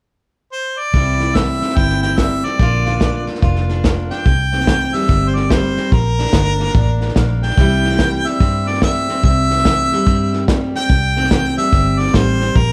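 A warm, up-front harmonica with light vibrato opens this excerpt at 0.5 s before a bright, picked jumbo acoustic guitar, a dark, round, foam-muted electric bass and a muffled, lo-fi drum kit of hi-hat, tight kick and snare join at 0.9 s, carrying an easygoing, sunny honky-tonk country swing over alternating C and Bb chords under light reverb.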